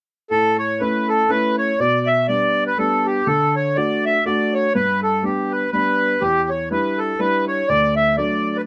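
Celtic folk waltz in A mixolydian, bright and rollicking, moving at 122 BPM in 3/4 with a gentle swing on the eighth notes, heard as a short cut from a longer piece. A reedy, vintage accordion with slow beating and a band-limited tone carries the melody up front from 0.3 seconds, while a clear, intimate upright piano, woody and boxy with audible action noise, accompanies through a progression of A, G/B, D, G, Em7 and D. The close, detailed recording and light reverb give the pair a present, immediate sound.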